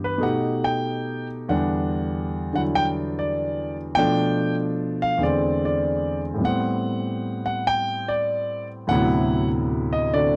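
A grand piano plays alone in this brief solo jazz passage, its intimate, up-front tone carrying audible action noise and a long, natural sustain. The mood is playful and sophisticated, with a loose rubato swing in 4/4 that moves through rich harmonies such as Em9, Bm7b5, Am9 and D13, and a new section begins at 1.5 seconds. Close, detailed miking and light reverb keep the instrument present and clear.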